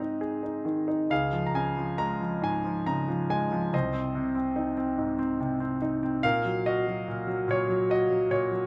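A clear concert grand piano plays alone from the first moment, a peaceful, lyrical classical piece in an unhurried triple metre with a gently flexible rubato feel. Close, detailed miking keeps the instrument intimate and up front, catching deep bass and audible action noise inside a light reverb. The harmony moves calmly through Ab, Db, Ab/C and Ebm/Bb across this short excerpt cut from a longer work.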